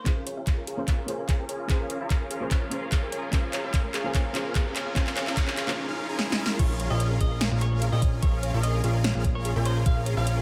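A soft, round pluck and a background swell open this bittersweet, emotional future bass excerpt at 147 BPM in a half-time feel in Bb minor, quickly joined by a mellow, tine-like synth arpeggio, huge, lush supersaw chords on Bbm7, a knocking electronic kick and a big-room kit with a punchy snare, metallic hats, handclaps and crash. The build-up brings drum fills, filter sweeps on the supersaws and arpeggio, and a riser, with chorus, delay and sidechain pumping on the synths. At 6.6 s the drop lands with a fat, saturated analog bass holding Bb1 up front and a clean, hollow-body electric guitar melody carrying spring reverb and analog delay, all in a dreamy mix soaked in plate reverb.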